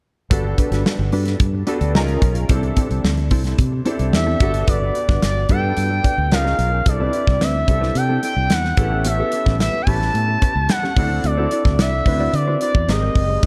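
A straight 4/4 groove at 110 BPM from a tight, up-front acoustic drum kit and a direct, fingered electric bass sets up this breezy, urban slice of polished 1980s jazz-funk pop in G major, cut from a longer piece. A clear grand piano with deep bass and ensemble chorus joins a dark, clean, compressed electric guitar riff sitting in the background, moving through Gmaj7, C#6 and C6 before turning to A7 and D9, while a smooth sawtooth lead with chorus, vibrato and expressive portamento glides in up front at 4.2 seconds. Light small-room reverb and a dark, warm production tone frame the whole track.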